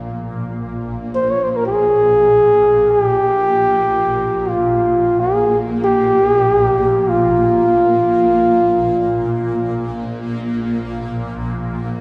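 A punchy, close-miked solo trombone sits up front in classical style, carrying the melody from 1.2 to 9.9 seconds with a touch of delay, its tone warm. Beneath it, a shimmering, ethereal ambient pad holds a low drone throughout, its slow attack, long release and octave-up shimmer colored by chorus, phaser and its own reverb. This free-time world meditation piece, cut from a longer work, feels spacious and meditative, bathed in the wet reverb of a scoring stage.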